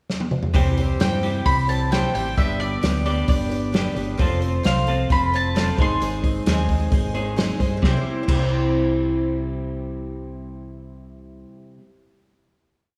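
An up-front acoustic drum kit played with bundle sticks kicks off with a short fill and drives a big, punchy rock groove in this brief, nostalgic and hopeful folk-rock and heartland-rock piece, where a dark, boxy twelve-string acoustic guitar strums shimmering open chords, a clean, compressed electric guitar rings out with a warbly pitch drift, a round hollow-body bass plays a dotted figure, and a woody mandolin with analog delay carries a period-phrased motif from 1.0 to 7.3 seconds before the guitars and bass settle onto a final C chord in a lush hall reverb that lends a big arena sound.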